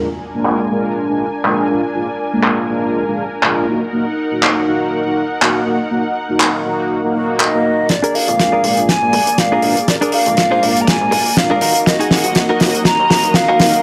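Nu-disco with a feel-good, groovy swing, this short cut opens on a mellow, round synth brass with chorus and tape echo, set over a lush, airy unison pad that pumps in time. A damped 70s drum kit with a fat, up-front snare, hi-hat and handclaps enters at 0.5 seconds, its filtered sound sweeping while the harmony moves between Bb7 and Ebm. A very quiet electronic swell rises at 7.1 seconds, and a hollow, close-miked concert flute takes the melody with vibrato and analog delay from 7.4 seconds. At 7.9 seconds the second section builds up with a drum fill, a tight, very quiet kick and a glossy, nasal synth bass, and at 8.0 seconds a clean, direct-recorded electric guitar riff joins, running through its own filter sweep. The whole cut has a dry, gritty hardware sound with transformer saturation and a light studio reverb.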